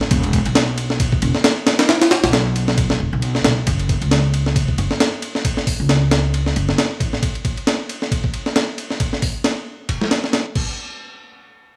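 A light reverb and studio ambience frame this raw, swaggering breakbeat excerpt, cut from a longer piece and moving at 135 BPM in 4/4 with a 56% swing on the sixteenths in F# minor. Up front, a sampler-style drum kit, compressed, pitched up and gritty with a thumpy kick, high-tuned snare and a tape-warm tone, drives crash, hi-hat, ride and snare through to 10.7 seconds, opening on a drop that lasts until 3.7 seconds. Beside it, a woody, dark upright bass on gut strings plays pizzicato between E1 and C#2, its tone tube-saturated, before it stops at 7.2 seconds.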